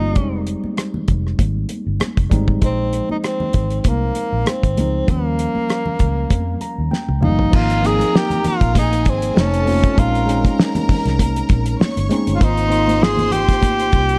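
Lush, romantic 1970s-style soul at 98 BPM in Ab major, cut from a longer piece, where a breathy, whispered tenor saxophone carries the melody up front over a worn, slightly out-of-tune tine electric piano, a round, foam-muted vintage fingered bass, a cloth-damped thuddy drum kit with a fat snare and dark cymbals, and very quiet high-tuned congas, with electric piano and drum fills leading at 7.5 seconds into a section where a smooth bowed string section adds a second line above, all set in a dark small-room production.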